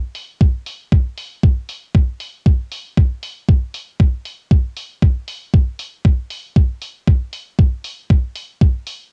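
A swung 16th-note groove at 117 BPM in 4/4 drives this sunny, feel-good nu-disco fragment, where an up-front, overdriven electronic kick with a knocking punch sits beside a filtered, gritty electronic hi-hat, both layered and re-recorded in a small room, with the dry, cassette-hued home recording running about 9 seconds.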